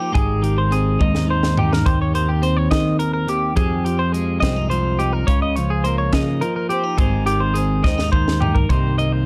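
Two twelve-string electric guitars open this bright, playful math rock and midwest emo excerpt in a straight 6/8, one carrying the chordal accompaniment while the other spins high arpeggios, both clean, twangy, compressed and up front. A growling, overdriven fingered bass and a crisp, airy fusion kit with a high-tuned snare and punchy kick join at 0.2 seconds, the drums adding fills at 1.0 and 7.8 seconds. Light reverb sits over a dark, warm production as the harmony moves from Abmaj7 through Eb6, Fm9 and Db69, returning to Abmaj7 before landing on Cm7.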